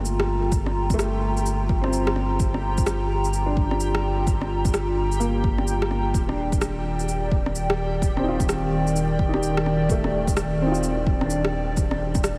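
A dreamy, reverb-soaked mix flecked with vinyl crackle frames this rainy, wistful future garage excerpt in G minor at 128 BPM with a swung 16th feel, where a warbling, detuned tape-like pad and a round, mellow dub sub bass sit up front with sidechain pumping, an overdriven electronic kick enters at 0.5 s beside an overdriven shaker and rim click, an intimate, woody upright piano with audible action noise, analog delay and its own pumping accompanies the move from Gm7 to Ebmaj7 at 6.1 s, and a reversed, bright granular texture swells in the background.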